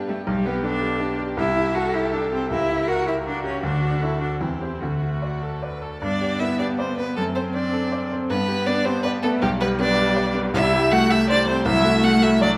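A lively, graceful classical-period piano quartet movement in a three-beat metre with rubato, cut from a longer piece, where an up-front violin with vibrato sings the smooth, even melody, a bright, brilliant grand piano accompanies alongside a close viola set in the background, a focused cello traces a second line from 0.1 seconds, and the rich bowed strings bloom in a recital hall reverb.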